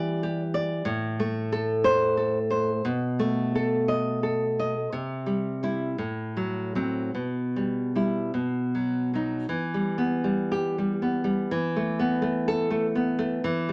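A full-bodied, up-front nylon-string guitar plays alone in this wistful, intimate romantic classical piece in E minor, fingerpicked in a rubato 2/4 at roughly 49-64 BPM, its deep classical tone carrying audible finger squeaks through a moderate studio reverb as the harmony moves from Em7 through Am, B7, C and F#dim/A before a new section arrives at 9.5 s and settles on Em and Esus4 in this short cut from a longer work.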